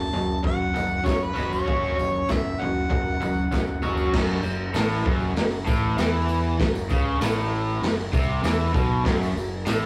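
An overdriven harmonica with light vibrato and scooped notes carries the melody up front over a bright, double-tracked garage guitar riff and a punchy fuzz bass, in a gritty, raw garage rock cut in F# minor at 98 BPM. The harmonica drops out at 3.8 s, and from 4.1 s the harmony moves from an F#5 power chord to F#m. A saturated breakbeat kit with dark cymbals and a tight kick drives a straight 4/4 beat, with a jingly tambourine in the background and a rough rehearsal-room sound with tube saturation.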